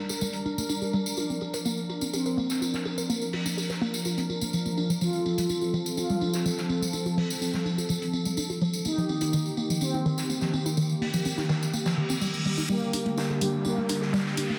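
Drenched in a wet scoring-stage reverb and a dense, heavily limited master, this cinematic, driving melodic techno excerpt sets an up-front, detuned sawtooth analog pad and a warbling, lo-fi pluck arpeggio over an oversized low-tuned drum kit with a fat, gritty snare and a distant, jingly tambourine. An expressive synth lead, a smooth, resonant sawtooth voice with vibrato and 12-bit sampler grit, carries the melody from 1.2 s. A reverse cymbal from 11.9 s then ushers in a build-up at 12.7 s, where a riser sweeps in and bold analog synth brass stabs sit in the background, and an overdriven electronic hi-hat joins at 12.9 s.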